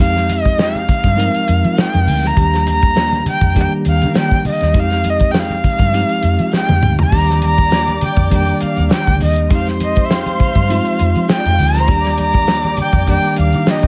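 Lush 1970s-style soul at 101 BPM in Eb major with a romantic, smooth mood, where an intimate, up-front erhu sings the melody with vibrato, portamento and tape echo over a bell-like tine electric piano, a round foam-muted fingered bass, a dry soul drum kit with a fat snare and dark cymbals, soft-handed congas and a twangy, slightly broken-up guitar riff from 0.6 seconds, while a woody, bowed string section enters after a drum fill at 7.1 seconds, all in a small room over an alternating Fm9 and Ebmaj7 progression in this excerpt from a longer piece.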